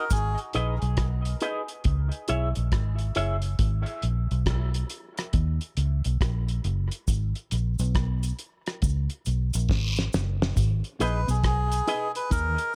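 Spacious and deep, this dub reggae cut is anchored by a round, foam-muted vintage fingered bass and a dry, cloth-damped drum kit with a fat snare and tight kick sitting up front, while a reedy melodica and a twangy envelope-filtered guitar drift through dub echo at the start and return near 11.0 seconds, a distant cabasa and guiro come back at 7.1 seconds, a drum fill leads into a very quiet, mellow guitar riff at 10.6 seconds, and a filter sweep runs through most of the piece over a small room ambience.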